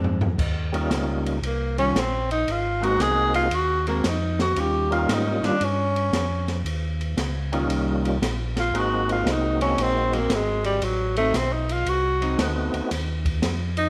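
Soulful and swinging, this short cut from a longer soul jazz organ trio piece moves at 115 BPM in 4/4 with a swung eighth-note feel, cycling between Eb9 and Ab9 before an Adim7 and a closing Ebsus2. A brief drum fill opens the first 0.4 seconds on an open acoustic kit with dark cymbals, a high-tuned snare and a boomy kick, which keeps time with hi-hat, ride, crash and toms throughout. A mellow tonewheel organ holds down the bass with a round, lightly overdriven tone, chorus vibrato and a slow rotary speaker, sitting up front, while a second, fatter organ voice carries a melody with percussive attack, key click and the same slow rotary sway. The breathy tenor saxophone enters at 1.5 seconds and leads as the soloist, its light vibrato and scooped notes heard up front yet with a roomy, distant quality. A clean, picked hollow-body electric guitar comps in the background until 12.4 seconds, and the whole trio is bathed in a moderate echo chamber reverb with small room ambience.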